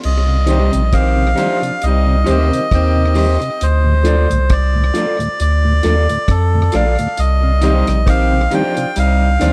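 Roots reggae with a laid-back, serious mood, heard in a short cut from a longer piece that moves from Cm to Dm and back to Cm. A reedy, breathy melodica carries the melody up close, its nasal tone touched with tape echo. Beneath it, a round sine sub bass sits up front with a fast attack and sustained notes, while a dry, acoustic drum kit with a tight kick, hi-hat, rim click and crash cymbal keeps a swung groove, its top end rolled off and its hits sent into tape echo. A mellow tonewheel organ with audible key click and a slow rotary speaker enters at 0.3 seconds. At 0.5 seconds a smooth-topped horn section with light vibrato adds a second line, joined by a slightly broken-up, fingered electric guitar tucked in the background. The production is dark, with light reverb and the feel of a small room.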